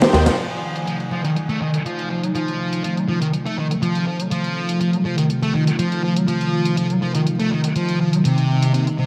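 A lush, airy pad of detuned sawtooth voices with chorus and phaser holds sustained chords from F7 to Cm7 under a filter sweep, while a filtered, tape-toned electronic hi-hat ticks beneath and a thick, double-tracked fuzz guitar riff pushes up front through distortion and digital delay, giving this raw, gritty 122 BPM breakbeat fragment a light reverb and a haze of vinyl crackle.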